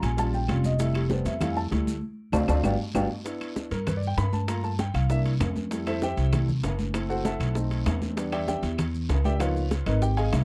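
Lively and sophisticated, this Afro-Cuban jazz excerpt moves at 195 BPM in a straight 4/4, opening with a soft, dark, boxy felt-muted upright piano carrying the melody until 3.0 seconds over a clear concert grand, a woody, up-front pizzicato upright bass, and a band accent with a drum fill before the grand piano takes the solo at 3.3 seconds. Behind them sit bright, high-tuned congas and tight bongos, woody claves, a raspy guiro and grainy maracas, while ringing metal-shell timbales sound distant in a large room. The harmony drifts through rich extended chords such as Fmaj9, B7b9 and Db13, and the dry, close recording has a 1970s studio character, with the pianos' action noise audible.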